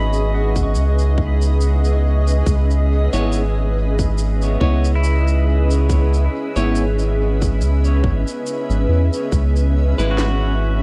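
A blurred, evolving granular cloud pad holds C#m7 chords from the start, alongside twangy pedal steel arpeggios played with fingerpicks and slide, drifting in the background through dub echo, over a round, dark analog bass sitting up front. This deep, hazy ambient dub piece moves at 70 BPM in C# minor with a light 16th-note swing, as a tight electronic kick in the background, a woody snare and a shaker tick along in a small room. From 3.1 seconds, clean, bright electric guitar stabs echo through the haze before the harmony shifts to E at 9.3 seconds.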